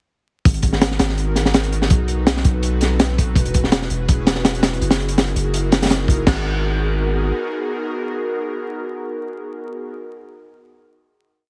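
A crunchy, heavily chopped breakbeat kit sits up front in this dark, atmospheric drum and bass and jungle piece at 165 BPM in G# minor, with a punchy kick, high-tuned snare and dusky cymbals dropping in at 0.5 seconds alongside a deep, mellow 808-style sine bass holding long notes. Above them, a soft, breathy pad with chorus and vintage 12-bit sampler grit warbles through closely voiced held chords with syncopated pushes, moving through G#m9, B7b9, E69 and F#13. The drums stop at 6.4 seconds and the bass at 7.3 seconds, leaving the pad on a final G#m9 until 9.9 seconds, all framed by a small room, vinyl crackle and a heavily compressed radio sound.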